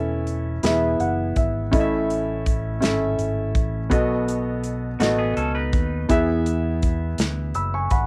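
A warm concert grand piano with deep bass and short sustain opens this soulful, jubilant slow gospel excerpt in 6/8 alongside round, amped fingered electric bass holding the low end. The piano sits up front with a cassette-tape tint and plays a fill from 0.6 to 1.7 seconds, while a natural country drum kit enters at 0.3 seconds with a punchy kick, medium-tuned snare and hi-hat in an airy, polished studio room sound. A bright, clean, picked semi-hollow electric guitar adds a brief compressed second line from 5.0 to 6.1 seconds, all within a moderate booth ambience on a homespun cassette recording.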